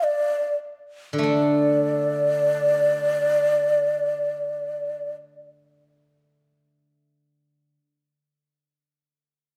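Bathed in a wet recital-hall reverb, this wistful, tender fragment of Chinese traditional chamber music opens with a breathy, close-miked bamboo xiao carrying an unsteady, soft-attacked melody with vibrato that slows over the first 1.2 seconds, while a ringing, silvery steel-string zither played with fingerpicks enters at 1.1 seconds as up-front accompaniment and continues after the xiao stops at 5.1 seconds.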